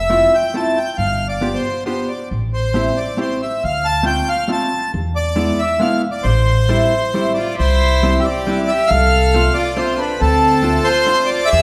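A nostalgic, whirling musette waltz in A minor moves at 137 BPM in a straight 3/4, heard as an excerpt cut from a longer piece. The accordion carries the melody from the start, reedy and rich, close-miked and dry so it sits up front, while a woody pizzicato upright bass with steel strings anchors the low end just as prominently. An electric hollow-body archtop guitar, dark, clean and compressed, supplies picked accompaniment through chords such as Fmaj7, G7, Am7, Dm7 and E7. At 7.6 seconds the harmony shifts toward Cadd9 and F6/C, and a single clear violin enters around 7.4 seconds with a soft attack and airy, floating bowed tone as a second line. The whole performance is set in a church or concert hall, bathed in a wet recital-hall reverb with a decay of 1.6 seconds.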